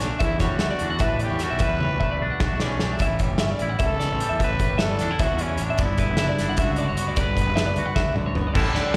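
Heard live through a venue's PA with a faint recital-hall ambience, this wistful, playful math rock and midwest emo excerpt races along in 7/8 at 302 BPM (eighths) over Em11, A7 and Gmaj7, with a raspy, growling trumpet carrying the melody with light vibrato and slapback echo until 8.2 seconds, a clean, twangy fingered electric guitar accompanying, a bright, compressed twelve-string electric guitar spinning arpeggios under subtle chorus, a growly fuzz bass, and a gritty, saturated, up-front indie drum kit with dark cymbals and a punchy kick that throws in fills at 1.8 and 8.0 seconds.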